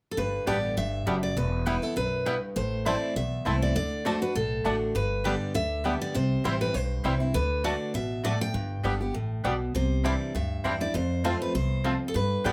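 A bright, picked dreadnought guitar melody opens this driving, virtuosic bluegrass excerpt at 200 BPM in G major, joined at 0.2 s by a full-bodied second guitar with fresh strings and finger squeak in accompaniment and a thumpy, woody pizzicato upright bass up front, while from 0.5 s a twangy, fingerpicked banjo carries a second melody and a round, double-strung mandolin adds stabs, all in light reverb over a swung progression that moves from G through Em, Am and D toward Cadd9 and F.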